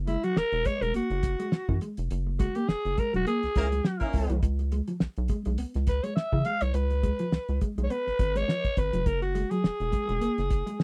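A growling alto saxophone takes the solo across this short funk excerpt, its raspy, breathy tone carrying a vintage grit and a touch of vibrato up front in the mix. Underneath, a rubbery, bouncy square-wave bass with a hollow, filter-plucked attack struts along at 104 BPM with a swung sixteenth-note feel, while a mellow, clean electric guitar, played with the fingers, repeats a riff. The cloth-damped drum kit sounds thuddy and dry, with a fat snare, tight kick and hi-hat, its top end rolled off. A band accent arrives at 2.1 seconds, and a dusky horn section with octave doubling and light vibrato adds a brief, punchy second line from 3.6 to 4.4 seconds, sitting distant and roomy behind the soloist. The playful harmony moves from Gb9 to Db7 and then to Gb7sus2, all captured in a close, 1970s-style studio sound with little reverb.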